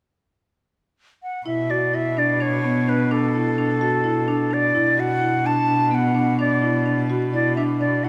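A moderate recital-hall reverb, about 1.8 seconds long, surrounds this short chamber piece cut from a longer work, giving it the resonance of a church or concert hall. It is contemporary instrumental music in B minor and an uneven 7/8 metre, counted at 255 BPM in eighths with a straight feel, and the mood is urgent yet pensive. A breathy, bright concert flute, placed up front, opens alone at 1.2 seconds, carrying the melody between A4 and A5 with a tongued, straight tone that sounds slightly unsteady. At 1.5 seconds a marimba played with medium mallets joins with warm arpeggios between B3 and F#4, settling onto a Bm7 harmony. A single bowed cello enters at the same moment and plays a low B2 bass beneath them, its tone earthy and nasal with a biting edge, an airy bow and light vibrato, and it sits a little lower in the mix than the flute and marimba.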